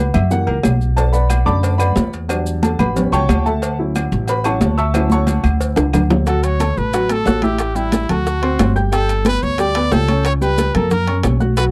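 Afro-Cuban jazz with a sophisticated, sunny mood, cut from a longer piece and captured in a dry, close 1970s-style studio sound. A slightly detuned upright piano, intimate and up front with audible action noise, takes a solo from the start alongside a pizzicato upright bass with woody steel strings. Behind them sits a percussion bed: soft-handed, high-tuned congas, ringing metal-shelled agogo bells and timbales, claves, grainy maracas, and tight cowbell and bongos. A drum fill from 4.9 seconds leads into the second section at 6.3 seconds, where a bright, punchy trumpet enters up front for a forceful jazz solo. The harmony moves through rich extended chords such as F#7b9, Dmaj9 and A13b9/C#.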